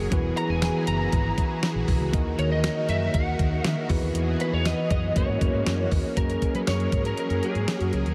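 A clean 12-bit drum machine sets a straight 119 BPM pulse in 4/4, its thumpy kick, fat snare, hi-hat and tambourine sitting up front alongside a round, punchy, foam-muted electric bass, in this uplifting, romantic 1980s-style pop excerpt in F# mixolydian. A bell-like tine electric piano with lush chorus and a sawtooth string machine voiced as violas with ensemble chorus fill out the chords, moving from Eadd9 through D#m and F# to F#add9. A lightly driven, slightly broken-up lead guitar with ensemble chorus and delay carries the melody from 0.4 s, the whole mix bathed in a huge, dreamy reverb.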